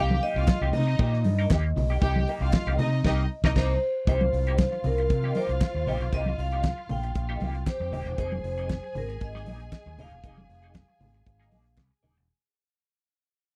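Dry, close 1970s-style studio sound frames this driving, danceable disco cut in F minor at 117 BPM, where a ringing vibraphone carries the melody over a lush bowed string section and a clean, compressed wah guitar with chorus, all anchored by an overdriven fingered bass up front, a damped 70s drum kit with a fat snare and dark cymbals, and background congas and crisp group handclaps, as the band hits an accent from 3.0 to 4.1 seconds before the music fades out over the Cm7 to Fm7 changes.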